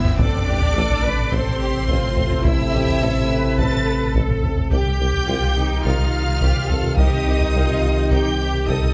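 Opening on a taiko fill and an electronic riser and sub drop, with an impact landing at 0.2 seconds, this brooding, vast excerpt of hybrid orchestral and electronic film score sets lush, focused violins in two lines, smooth, distant violas, woody cellos and a deep, clean sine sub bass over heavy-stick taiko, while dark French horns and soft-attack trombones hold sustained chords above even double basses and a punchy tuba, the whole ensemble sitting in a moderate scoring-stage reverb as the harmony shifts at 4.7 seconds.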